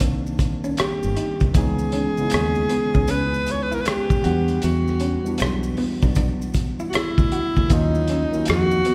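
R&B and neo-soul at 78 BPM with a swung sixteenth feel, this introspective, smooth fragment sets a breathy tenor saxophone with vibrato and scooped notes up front from 0.8 s over a clean tine electric piano, a punchy foam-muted fingered bass, a muffled, gritty cloth-damped drum kit with tight kick, hi-hat and rim click, a dark hollow-body jazz guitar and soft maracas and finger snaps in the background, all moving through Cm9, C#m9, Em9 and D#m9 inside a moderate cathedral reverb.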